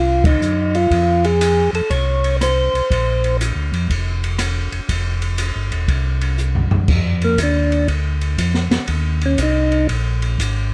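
A swung 4/4 groove at 120 BPM drives this soulful, bluesy soul jazz organ trio, cut from a longer piece and tuned slightly flat to A4 = 436 Hz. A mellow, round tonewheel organ carries the bass line from the start, its clean tone colored by chorus vibrato and a slow rotary speaker, while an open jazz drum kit joins at 0.2 seconds with a band accent, its dark cymbals, high-tuned snare and punchy kick sounding acoustic and close in a small room. Above them, a percussive tonewheel organ with third harmonic percussion and its own slow rotary speaker states the melody, drops out at 3.4 seconds, and returns at 7.2 seconds after a drum fill ushers in a new section where the organ solos over Dm and Eb5. The harmony moves from F7 through Bbadd9 and Fsus2 before that shift, keeping a bluesy feel. The sound is dry and intimate, with close, detailed microphones placing all three parts up front.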